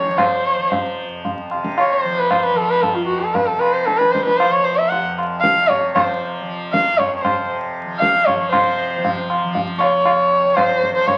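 Heard through the crackle of a very old 78 rpm record, this short cut from a longer Hindustani classical performance sits in a wet studio reverb. The mood is radiant and meditative, in a straight 4/4 at about 116 BPM that gradually speeds up. A single bowed sarangi carries the melody up front with a dark, woody tone, gliding between notes with portamento and light vibrato while its sympathetic strings ring around it. Beneath it, a softly plucked tanpura holds a bright, buzzing, shimmering drone well back in the mix. The low-tuned tabla comes in at 0.1 s with a short ring, its acoustic sound compressed and saturated. At 8.5 s the music moves into a new section, and all three instruments continue together to the end at 11.2 s.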